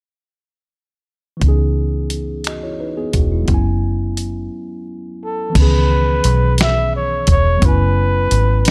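A digital ambience surrounds this short, sultry slice of slow six-eight R&B, cut from a longer piece and pitched a hair sharp of standard tuning. From 1.4 seconds a dusty soul sampler-style kit, gritty and compressed with a thumpy kick, medium-tuned snare, hi-hat, finger snaps and crash cymbal, sits up front beside a vintage fingered electric bass that is foam-muted, dark and round. A worn tine electric piano, clean, direct and slightly out of tune, lays down C#m9 and F#7sus4 chords in C# minor at 58 beats per minute, giving the late-night groove its warm haze. A break arrives at 4.5 seconds, and at 5.2 seconds a breathy flugelhorn takes the solo melody in a pop style, whispered and intimate, with soft attacks, scooped notes and vibrato. The horn stays close and up front as the second section moves through the same two chords to the end at 8.7 seconds.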